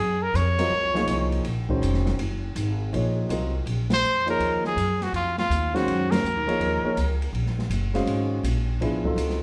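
A clear, vibrato-laced trumpet states a searching, hypnotic modal jazz melody in two short phrases, entering again at 3.9 seconds on a full-band accent, over a woody pizzicato upright bass, a mellow grand piano sounding a minor-ninth chord, and a swung drum kit with dark cymbals and a boomy kick, all set in a moderate concert-hall reverb in this excerpt cut from a longer piece.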